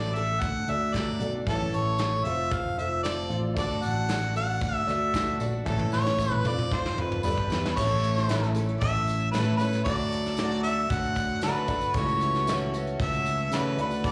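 Hopeful and nostalgic, this live-sounding folk and heartland rock passage features an up-front harmonica solo with light vibrato and scooped notes over a shimmering, octave-doubled twelve-string acoustic guitar, a dark, boxy grand piano in the background and a punchy fingered electric bass, while a soft brush drum kit plays a fill from 5.7 to 7.8 seconds, a reedy, very quiet pedal harmonium and a jingly tambourine join at 3.6 seconds, slapback echo touches the harmonica, guitar and piano, and club reverb gives the feel of a small venue heard through its PA.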